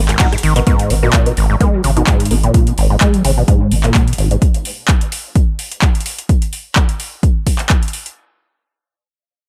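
In a dry, close mix cut from a longer piece, this trippy, driving acid house groove at 128 BPM in G# minor rides on an overdriven, punchy kick up front and an analog drum machine with metallic hats, handclaps, ride cymbal and rim click re-recorded in a small room. A deep, saturated sine sub bass pumps under the kick, and a squelchy, resonant sawtooth acid riff with overdrive, analog chorus and dub echo plays until 4.4 s. Its filter sweeps from 0.7 s alongside a muted, detuned, dark dub chord stab with phaser, cassette-tape colour and dub echo that sits in the background. The stab enters over a G#m7 chord, which drops out at 0.7 s, and lasts until 2.4 s.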